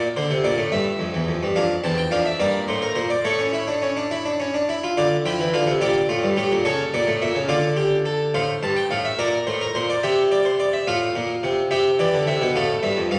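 A brilliant, French-style harpsichord with plucked octave strings sits up front as the sole voice in this lively, elegant baroque-style three-part fugue, taken from a longer piece. It moves at 71 BPM in a straight 6/8, counted in dotted quarters, ranging from E2 to A5. The music begins in D minor and turns to F major at 8.3 seconds, all set in the wet reverb of a scoring stage.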